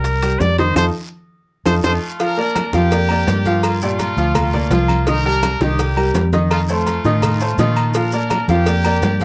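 A straight 4/4 salsa groove at 167 BPM drives this joyful, danceable clip in Bb major, cut from a longer piece. Up front, a dark, round, foam-muted fingered electric bass with a vintage amped tone anchors the low end while a clear, slightly worn grand piano supplies accompaniment over Cm7, F7, Bb and Gm7 changes. A punchy, vintage pop-style trumpet opens with scooped notes before handing the melody at 1.9 s to a bright horn section with vibrato. A dense bed of acoustic percussion sits in the background: tight, high-tuned bongos and cowbell, ringing metal-shelled timbales and agogo bells, raspy guiro, grainy maracas, very quiet thick-skinned congas and woody claves. A drum fill and band accent from 0.8 to 2.2 s push the tune into its next section. Close, detailed microphones and light reverb keep the sound crisp and present.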